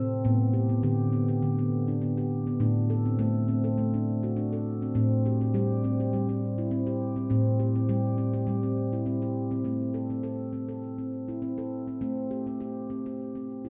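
Gentle and meditative, this short world excerpt features a solo handpan with a dark, ringing stainless-steel tone, lightly swung and placed up front, its smooth voice softened by a diffuse ambient delay and a wet echo-chamber reverb as the harmony moves into a new section at 9.6 seconds.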